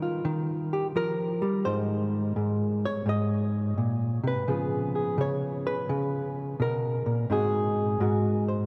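Solo jazz at a relaxed 85 BPM with a gentle swing, this short excerpt features a single electric hollow-body jazz guitar, dark, clean and compressed, sitting up front as it moves through Eb9, Abadd9, Db7 and Ab7 harmonies across a range from Ab2 to Eb5. A long, wet cathedral reverb surrounds the fingered guitar, giving the unhurried playing a spacious, church-like glow over its 8.7 seconds.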